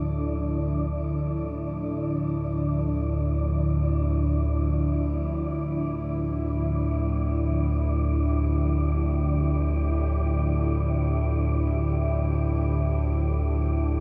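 Dark ambient drone in free time and D minor, this ominous, cavernous passage is cut from a longer piece and holds a single Dmadd9 chord across its 14 seconds. An analog drone sits up front in the low register, its nasal sawtooth and pulse-wave tone evolving through pulse-width modulation and a filter sweep, softened by chorus. Above it, a sweeping resonant pad sustains detuned sawtooth chords with a noise layer and filter swell, its chorus and shimmer reverb giving it an airy lift. Highest and quietest is a wind-like tuned noise texture, breathy and sine-based, bathed in its own reverb and shimmer. The pad and the texture both fade out over the full length, while slow attacks and long releases keep every sound blurred together within a moderate plate reverb and small room ambience.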